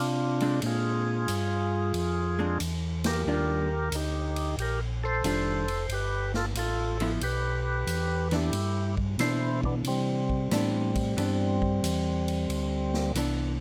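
A percussive tonewheel organ carries the melody up front, its full, clean tone marked by second-harmonic percussion, key click and a slow rotary speaker, while a second, mellow tonewheel organ supplies a round, dark bass line through the same slow rotary. In this swinging, soulful soul jazz organ trio excerpt, a hollow-body archtop guitar adds picked, compressed accompaniment and a big-band drum kit with a punchy kick and natural hall sound swings on hi-hat, ride, snare and kick, both entering at 0.4 seconds. The band hits a shared accent at 2.9 seconds as the chords move through Ebmaj9, G13 and Cmaj9, all in light reverb.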